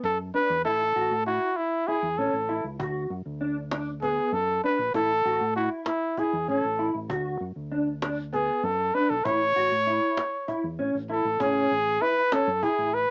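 A soft-attack trumpet with vibrato carries the jazz-style melody up front while a dark, clean electric guitar, thickened by ensemble chorus, plays compressed fingered arpeggios and a round, punchy fingered electric bass holds the low end, with a woody cajon under soft hands joining at 2.8 seconds, in a bright, driving progressive instrumental in 7/8 at 195 BPM in eighths that moves between D6 and A chords, the trumpet, guitar and cajon carrying a cassette-tape tone within a small-room, small-speaker home-recording sound across this 13.1-second cut from a longer piece.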